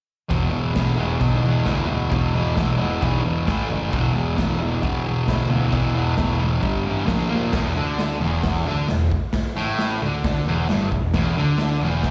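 Rowdy and raw, this short garage rock cut from a longer piece drives along in a straight 4/4, sounding like a live gig caught through a club PA with a touch of room reverb. A dark, fuzz-drenched guitar, double-tracked and sitting up front, carries the riff from 0.3 seconds, moving through E5, A5 and G5 power chords before landing on A#5 and then dropping out of fixed harmony as the second section begins at 7.5 seconds. Underneath, a picked electric bass with overdrive and fuzz adds a round, warm bottom from the background. The acoustic drum kit is gritty and saturated, with a punchy kick, a medium-tuned snare, hi-hat and crash cymbal, its top end rolled off in a bright stone room. All three parts play together until the cut ends at 12.1 seconds.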